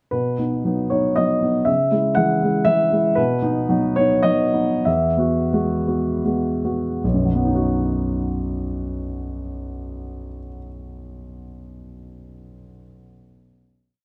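A close, detailed recording in a moderate stone room places a dark, mellow concert grand piano up front, playing alone through this brief, peaceful and intimate neoclassical minimalist piece in B major and 3/4, its rubato single-line melody set over deep, rocking two-note chords in the bass, slowing from 2.4 to 7.0 seconds before settling on a final B chord that rings from 7.0 seconds.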